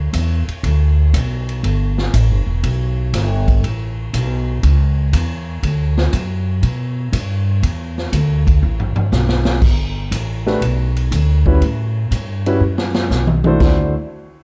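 A woody, pizzicato upright bass and a boomy, roomy big-band drum kit open this swinging jazz excerpt at 120 BPM in D major, with a brassy mood and a dark, dry production. The drums play fills at 8.6 and 12.6 seconds as the chords move from Dsus2 through Em and Aadd9 toward Gmaj7 and A7sus2. An intimate concert grand piano, its action noise audible, enters with accompaniment at 10.5 seconds before the harmony lands on D9.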